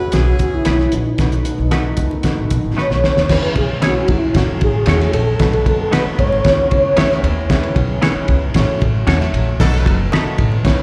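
A straight 4/4 groove at 114 BPM drives this uplifting, danceable 1960s-style soul excerpt: a cloth-damped, thuddy drum kit with a fat snare and dark cymbals sits up front over woody pizzicato upright bass, while a mellow, flute-like tonewheel organ carries the melody with chorus vibrato and tape echo until 7.2 s. A semi-hollow electric guitar adds clean, compressed stabs, a worn baby grand piano accompanies in the background, and a lush detuned pad and ringing high-tuned congas sit very quietly beneath, with a punchy horn section returning for a band accent at 9.6 s, the whole live gig heard through the venue's PA in a small room with recital hall reverb.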